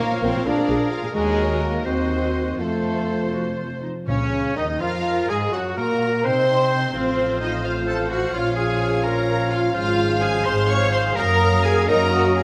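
A lush, expressive violin section carries the melody with vibrato from a slight distance, leading this dramatic, urgent passage from a fast romantic symphonic movement in a rubato 6/8. Beneath it, a very quiet second violin line, an airy, hollow flute section, a present oboe and a roomy clarinet weave supporting lines. A smooth viola section, a mellow, very quiet bassoon and tight, sustained French horn chords fill out the accompaniment, while a rich double bass section and a warm cello section anchor the bass. Timpani struck with hard mallets sound articulate and close at the opening and return at 4.1 seconds, when a clear trumpet adds background stabs and a mellow trombone section joins with sustained chords. The harmony moves through seventh, diminished and half-diminished chords, and a moderate scoring stage reverb gives the orchestra a spacious setting.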